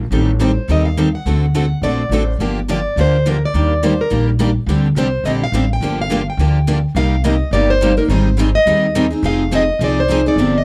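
A plugged-in parlour steel-string guitar carries the melody up front from 0.4 s in this swinging, virtuosic jazz manouche excerpt at 210 BPM in G minor, shifting to C minor at 7.0 s. Beneath it, one picked concert-body guitar with fresh strings and audible finger squeak sits up front, a full-bodied jumbo guitar picks from the background, and a pizzicato upright bass on gut strings gives a woody, thumpy, warm pulse. The dry, close 1970s-style studio sound carries only light reverb.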